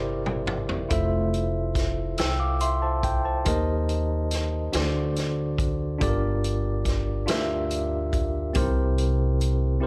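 A clean, warm tine electric piano and a woody pizzicato upright bass open this short cut from a longer slow gospel piece in 6/8, with a roomy big-band drum kit of hi-hat, snare, toms and punchy kick entering at 0.3 seconds on a brief fill. The piano sits up front through its own built-in speakers, voicing seventh chords such as Fmaj7, Cm7/Eb, D7 and Gm7 over the bass's low line, while the drums keep a straight feel in the studio room. The mood is reverent and uplifting, and lossy compression artefacts colour the sound.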